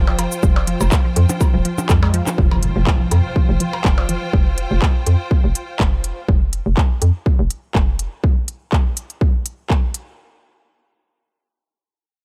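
Minimal techno at 123 BPM in 4/4, with a light swing on the 16ths and a quirky, cool mood, cut from a longer piece. A punchy, overdriven electronic kick sits up front beside a hollow, bouncy FM bass that knocks with fast-attack, decaying notes, thickened by tube saturation and pumping against the kick. A layered techno kit adds handclaps, smooth hi-hats and shaker, while overdriven percussion blips carry a dub echo and a juicy, squelchy pluck riff, detuned and resonant with chorus and digital delay, plays in the low register until about 4.2 seconds. Behind them, a distant, lush symphonic string section holds bowed, vibrato-rich ensemble tones until about 6.3 seconds. The track opens on a drop, and at 2.4 seconds a filter sweep and a very quiet electronic impact mark the move into the next section, where the kick and kit carry on. The mix is dry, with little reverb.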